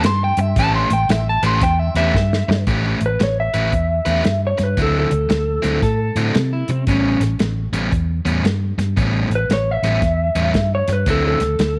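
Laid-back and rollicking, this electric blues shuffle swings at 114 BPM in A mixolydian, moving between A9 and D9 chords in a clip cut from a longer piece. A crunchy, overdriven guitar picks out the riff from the start until 11.6 seconds, sitting over a dark, round, foam-muted fingered bass with punchy transformer saturation, up front in the mix. A dry soul drum kit with a medium-tuned snare, tight kick, hi-hat and a rolled-off top carries the groove, with a fill leading into the second section at 2.7 seconds. A twangy, fingered guitar at the edge of break-up opens with a clean solo and returns briefly as a second line, while a lo-fi, compressed guitar through a small old amp takes the melody with slapback echo from 3.1 seconds. Light reverb and studio ambience give the whole a relaxed, roomy feel.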